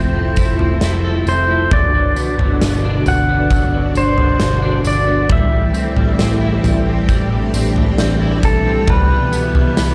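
Floating and ethereal, this dream pop excerpt at 67 BPM in G major drifts through Fmaj7, Gmaj7, Am7 and Cmaj7 as a clean, compressed pedal steel carries the melody with fingerpicked slide and volume swells through tape echo, over shimmering, up-front sawtooth string-machine violins with slow-attack ensemble chorus, a twangy, slightly broken-up electric guitar picking arpeggios through chorus and tape echo, a dark, round, foam-muted picked bass with transformer saturation, and a huge arena drum kit of punchy kick, medium-tuned snare, tambourine and toms that enters at 0.4 s in a pumping hall, the whole mix tinted by small-room ambience and cassette tape.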